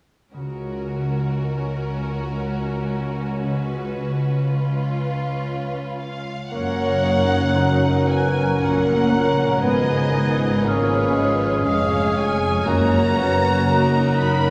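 Ringing fingerpicked concert harp arpeggios run through this serene, tender classical passage in F# major, a slow rubato 3/4 at 58 BPM cut from a longer piece, as a lush, expressive violin section sings the melody over a smooth second violin line, a background viola section and a warm cello bass; at 6.5 seconds a dark, distant cor anglais, a very quiet clear clarinet, a pure small flute group with rolled-off highs, a mellow bassoon, a roomy French horn section holding sustained chords and a bowed double bass section join, and hard-mallet timpani add a very quiet touch from 12.7 seconds, all set back in a reverberant concert hall.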